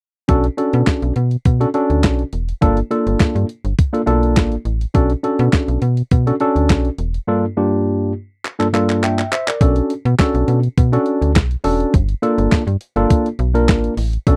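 A worn, slightly out-of-tune tine electric piano, lightly overdriven and barking through a combo amp, carries the chords in this funky, danceable early-eighties boogie funk excerpt at 103 BPM, alternating between Bm9 and Gm9. Beneath it, a snappy FM bass with a metallic, fast attack and a decaying tone joins a clean 12-bit drum machine with a thumpy kick, medium-tuned snare, hi-hat and handclaps, tape-warm and re-recorded in a small room. A drum fill at 8.4 seconds leads into a second section at 9.6 seconds, all captured in a dry, close 1970s-style studio sound with every part up front.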